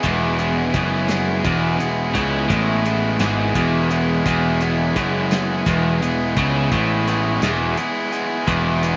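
Indie rock in 6/8 at 57 BPM in E major, carefree and jangly, with a biting overdriven guitar riffing low alongside a bright, up-front cranked stack guitar carrying slapback echo higher up, a round, fuzzy picked bass underneath and a loose, muffled lo-fi drum kit of hi-hat, tight kick and medium-tuned snare, all sitting on a single E chord through the 9 seconds of this dry, dull-topped cut from a longer piece.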